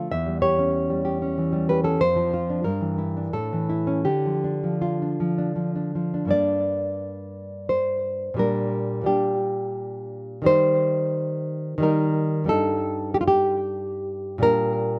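A dark, full-bodied nylon-string guitar, thumb-plucked and up front with a slapback echo, carries this passionate, melancholic romantic piece for solo classical guitar alone, drifting in rubato 3/4 at 78-96 BPM through D minor before moving to G minor at 6.3 s, all set in light reverb from an outdoor recording in this short extract of a longer work.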